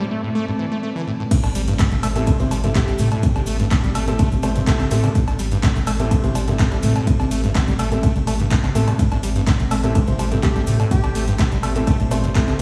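Acid house at 125 BPM in A minor with a trippy, hypnotic mood, this excerpt opens on an Am7 chord, with a warbly, lo-fi pad pumping under sidechain, a squelchy, resonant saw acid bass riff with analog delay, dark baby grand piano stabs and a brief, biting string section that ends at 1.3 seconds as a filter sweep on the pad leads into the drop. From there a punchy, up-front electronic kick, a booming analog drum machine with metallic hats, cowbell, handclaps, toms and woodblock, a very quiet gritty sampler-style kit and a grainy cabasa drive the groove, while a round sine sub bass enters at 1.6 seconds. A catchy, detuned unison lead pokes through in the background with vibrato and delay, and the whole track sits in stone-room reverb as if played on a big sound system in a bare room.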